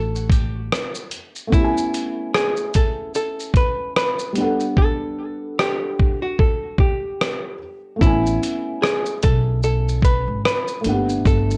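A dark, hollow-bodied archtop guitar carries the melody through tape echo and plate reverb over a soft, felt-muted upright piano, whose action noise and short, mellow notes sit behind a cassette haze in this dreamy, cosy lo-fi hip hop fragment that swings gently between Gmaj9 and Amaj9. A gritty, compressed sampler-style kit with a thumpy kick, rim click, shaker and hi-hat sits up front from 0.2 seconds, its hi-hats dropping out from 4.8 to 8.0 seconds. A woody pizzicato upright bass briefly sounds at the start and returns at 8.0 seconds, while a moderate room reverb and tape grain colour the whole.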